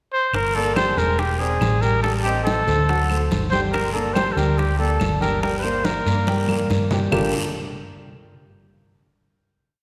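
A mellow, up-front trumpet opens this short, sultry and fiery Afro-Cuban jazz piece with a brief pickup, then states hook-like motifs with light vibrato, soft attacks and scooped notes. Beneath it, a dark, punchy hollow-body electric bass plays a tumbao that anticipates the chords, while an intimate grand piano with audible action noise plays a montuno in octaves. Bright, damped congas with slaps and open strokes, very quiet bongos in steady eighths with hand bell, a woody two-bar clave line and a raspy guiro fill out the percussion, all set in a lush concert-hall reverb, before a drum fill from 6.3 seconds leads into a final Gm9 chord at 7.1 seconds.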